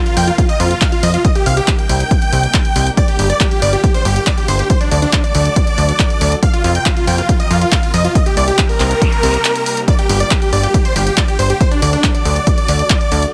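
A huge, bright supersaw lead carries the melody from the start, its detuned unison sawtooths pumping against the kick and trailed by dub echo, while a catchy, plucky unison lead plays a second line in the background over a very quiet, silky string pad. This uplifting trance excerpt at 139 BPM in G minor feels bittersweet and euphoric, driven by a punchy electronic kick and a funky, ring-modulated analog bass sitting up front, with handclaps and hi-hat from an analog drum machine. A faint noise sweep enters at 8.7 seconds, leading into a brief break at 9.4 seconds, and the chords cycle through Fsus4, Cm7, Gm7 and D in a dry, close-sounding mix.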